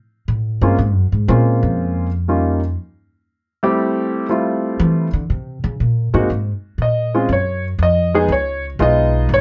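A woody, pizzicato upright bass with steel strings opens this moody, swinging jazz piano trio piece, taking a solo from 0.3 seconds at 120 BPM in a 3/4 swing over chords such as Bbm9, Eb9 and Fmaj7. An intimate, natural concert grand piano, with audible action noise and deep bass, joins at 0.6 seconds and takes its own solo from 6.8 seconds over Bbm7 and Db7. Both instruments sit up front, close and detailed in a nearly dry room, tuned to A4 = 438 Hz, in a brief cut from a longer piece.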